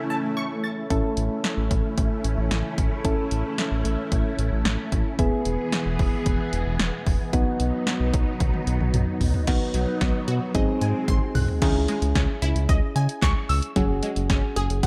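A punchy analog drum machine sets a straight 4/4 synth-pop groove at 112 BPM from 0.9 s, with kick, snare, handclaps, hi-hat, toms and crash, and a round, deep analog bass sits up front beside it. Over a dark, hall-washed mix, soft warbling electric-piano-like keys with chorus and vintage string-machine cellos, phased and sub-octave-thick, carry a melancholic, cool mood through A, E, B and G#7. A lush, bright detuned unison pluck with digital delay returns in arpeggios at 9.5 s, and when the strings drop out at 11.6 s the music settles into C# minor on C#madd9 and F#sus2 before the fragment cuts off.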